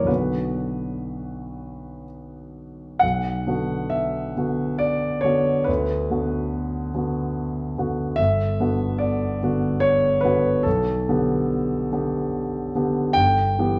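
Yearning and melancholic, this short excerpt from a longer Romantic nocturne for solo piano sits in B minor and moves in a flexible 3/4, its rubato pulse drifting between 60 and 74 BPM. A concert grand carries the whole passage from 0.0 to 13.8 seconds, placed up front with a deep bass and a tone that reaches from G1 to G5. After a brief opening section, a new section begins at 3.0 seconds, and the harmony moves from B minor through Bm/D to a Gmaj7 at 8.2 seconds before settling on G/B and then Em/G. A moderate recital hall reverb lends the sound a 1.6-second glow. The production is dark and warm, with nothing above 10.7 kHz.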